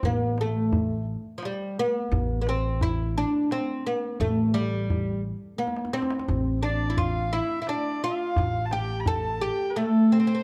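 A straight three-beat pulse carries this short cut from a longer Persian modal ensemble piece, its mood longing and soulful. Up front, a fretless oud plucked with a plectrum carries the melody, its double strings sounding bright and woody, while a pizzicato upright bass on steel strings holds a low A beneath it. A tombak played with hard hands adds tight percussion with a small-room sound, and a drum fill arrives at 5.6 seconds. At 6.6 seconds a single bowed kamancheh enters as a second line, nasal and earthy, shaded with light vibrato and portamento. Light reverb and a dark, warm production frame the ensemble.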